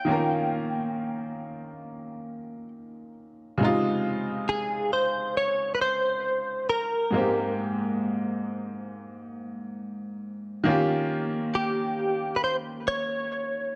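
A clean, picked electric guitar carries the melody up front, its compressed direct tone colored by analog chorus and tape echo in this tender, romantic R&B cut from a longer piece, moving in a straight 4/4 at 68 BPM and tuned to A4 = 438 Hz. A bright baby grand piano accompanies throughout the 13.8 seconds with brilliant, short-sustained playing over an Eb7, Dbmaj7, Abmaj9 progression that returns to Eb7. A lush hall reverb of 2.2 seconds wraps the dark, warm production.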